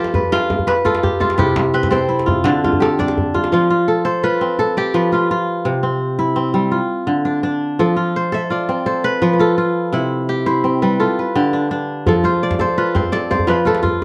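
A flowing twelve-eight lilt underpins this hypnotic West African traditional piece, cut from a longer performance, where two fingerpicked acoustic koras ring out over a repeating F, C, Dm cycle. One kora carries the melody up front with a crisp, warm tone, while the other spins bright arpeggios across a broader span beneath it. A tight, cracking djembe with a vintage, band-limited colour plays until 3.5 seconds and returns at 12.1 seconds, all within a dark production and a moderate studio ambience.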